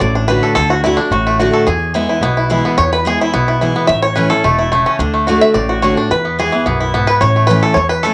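A twangy, percussive five-string banjo solo takes the lead from the first second, played with fingerpicks and sitting up front, while a full-bodied picked dreadnought acoustic guitar, finger squeak audible, and a woody, thumpy pizzicato upright bass drive this lively bluegrass cut in A major at 216 BPM. The chords cycle through D, E and A, and the banjo and guitar carry a cassette tape coloring. The home recording sits in a small, moderately reverberant room, and the snippet is taken from a longer piece.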